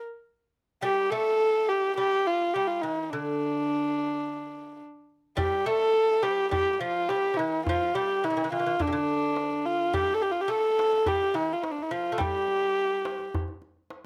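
Opening at 0.8 s, a dark, intimate kamancheh carries a longing melody up front with light vibrato, portamento, an airy bow and slapback echo, over a delicate, bright second line of fingerpicked gut-string lute, and a tight tombak joins them at 5.4 s and plays a drum fill at 13.9 s in this soulful Persian modal ensemble excerpt recorded outdoors with light reverb.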